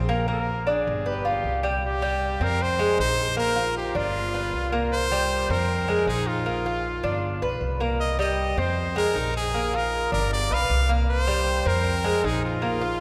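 A Cuban tres and a plucked upright bass open this latin piece in the son and guajira style, the tres picking arpeggios on its metallic double strings, some doubled at the octave, over the bass's dark, woody, thumpy gut-string tone. At 0.3 seconds a brilliant trumpet enters up front with a solo, its punchy, forceful, close-miked sound carrying vibrato in a pop style. The mood is nostalgic yet danceable, with a straight four-beat feel and chords that cycle through C5, Fm7, Bb and G7 and back again. The tres and bass also sit up front, giving the ensemble a close, acoustic presence. A wet cathedral reverb with a long tail surrounds the group, as if it were playing in a church or concert hall, and the recording is cut from a longer piece.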